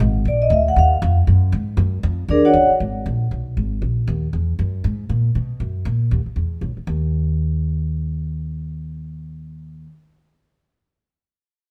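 Woody, pizzicato upright bass opens this moody, swinging fragment of fast small-group jazz at 236 BPM in Eb minor, sitting up front and carrying the low end through to 9.9 seconds. A ringing, metallic vibraphone, played with medium mallets and the motor off, states a brief melody from 0.3 to 2.7 seconds with a boxy, small-room tone, before the bass continues alone over shifting suspended and minor harmonies. The band plays live together in a stone room whose moderate reverb adds a sense of space.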